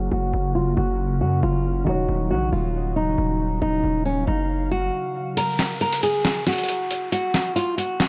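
An echo-heavy, lightly reverberant mix frames this triumphant yet wistful half-time trap excerpt, cut from a longer piece, where a fingerpicked, full-bodied nylon-string guitar carries the melody up front with audible finger squeak. Beneath it, a soft, felt-muted upright piano sits in the background and an ethereal, detuned pad holds chords from F# to D#m7 under a filter sweep, while a distorted, heavy 808-style bass plays until a short break at 4.9 seconds. At 5.4 seconds the piano and pad stop and the harmony drops away, as a muffled, pitched-down sampler-style drum kit of handclaps, hi-hat and snare enters with the kick muted, joined by an electronic downlifter in the background.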